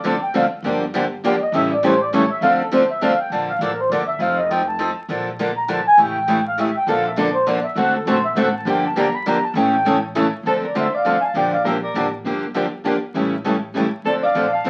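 Acoustic string swing in the jazz manouche style, fiery and virtuosic, this excerpt in 3/4 opens with a reedy, mellow accordion carrying the melody up front as a solo through 10.4 seconds, over two picked steel-string acoustic guitars, one bright with fresh strings and the other warm, both with audible finger squeak, while the second guitar drops out and returns at 6.9 seconds. A woody, dark upright bass with gut strings thumps underneath, and at 10.5 seconds a soft-attacked, distant soprano saxophone adds a second line in jazz style. The whole is bathed in wet studio reverb and the crackle of a very old 78 rpm record.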